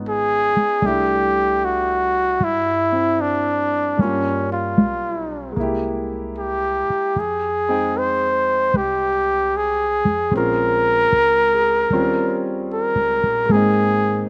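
A romantic, tender jazz ballad excerpt opens with concert grand piano and upright bass together, the trumpet joining at 0.1 seconds, all moving at an unhurried 76 BPM in 4/4 with a gentle swing on the eighth notes. The breathy trumpet carries the melody up front, its mellow, close-miked tone shaded with vibrato and scooped notes, and a touch of slapback echo trails behind it. Underneath, the piano accompanies with a smooth, vintage character, deep bass and long sustain, also lightly touched by slapback echo. The pizzicato upright bass, woody with steel strings, anchors the low end. The harmony drifts through lush extended chords, from Db9 and C6 through Gm7b5, C7b13 and Fm9 before settling on Abadd9 near 13.5 seconds, and the dry, open-air sound keeps the three players intimate and close.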